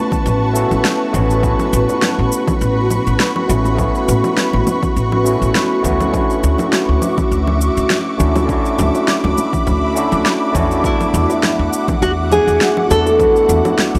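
A lightly swung groove from a punchy, layered electronic kick and an electronic kit of cabasa, congas and fat snare, dusted with very quiet, soft-handed acoustic congas and bongos, carries this blissful, relaxed sunset chillout excerpt from a longer piece. A woody, thumpy pizzicato upright bass sits under a gritty, overdriven tine electric piano with analog delay, while an ethereal, airy pad with ensemble chorus and reverb holds mellow, sustained chords up front. At 10.9 s a bright, fingerpicked nylon-string guitar enters with a brief melody over the dry, hardware-recorded studio sound.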